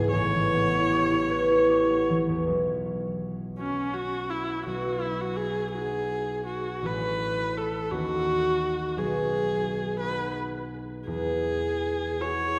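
Impressionist classical duo for viola and harp, luminous and dreamy, moving with a rubato lilt in a gentle compound metre in this passage cut from a longer piece. The rich, up-front bowed viola carries the melody with vibrato, soft attacks and expressive portamento, while the thumb-plucked concert harp supplies ringing accompaniment through chords like Bsus2, Amaj7 and Eadd9. Both sit up front within a lush church reverb, with the music opening into a new section at 2.5 s.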